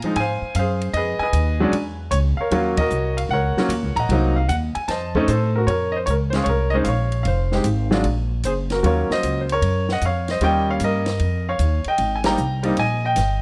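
A clear, up-front upright piano carries the melody from the first moment over a woody pizzicato upright bass and a softer, dry cocktail drum kit with dark cymbals, a high-tuned snare and a tight kick, giving this smoky, cool jazz piano trio a swinging 152 BPM pulse in Bb minor, with plate reverb on the piano, a dark production, and band accents at 2.7 and 12.2 seconds.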